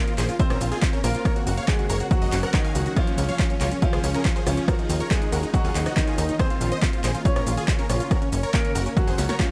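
A huge, detuned supersaw lead carries the melody with sidechain pumping and delay, while a brilliant grand piano with digital delay plays a second line beneath it in this euphoric uplifting trance excerpt at 140 BPM in 4/4. A nasal, filter-plucked sequencer bass enters at 0.2 seconds with sidechain pumping, followed by an overdriven, up-front kick at 0.4 seconds, and an analog drum machine adds a punchy snare, handclaps, hi-hat, rim click and shaker, with a drum fill from 9.2 seconds. A very quiet, shimmering pad with chorus, phaser and its own reverb sustains chords moving through Bbmadd9, Gb, Db and Ebm7, in an otherwise fairly dry mix.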